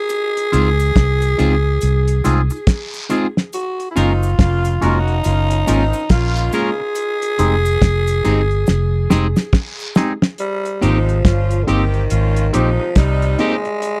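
A raspy, growling tenor saxophone with tape echo carries the melody up front through this sweet, tender lovers rock reggae fragment in Ab major at 70 BPM, its 16ths swung over a cloth-damped drum kit with a fat snare, tight kick and rolled-off top that plays a fill from 8.7 to 10.4 seconds. A round, foam-muted fingered electric bass sits up front beneath a mellow tine electric piano, a bright, twangy picked guitar adding phaser-tinged stabs, and a faint, distant cabasa and guiro. An edgy, loose saxophone section joins with a second line at 4.0 seconds, all captured in a dry, close 1970s-style studio sound as the chords move from Dbmaj7 through Gbmaj7 and Fm7 to Abmaj7.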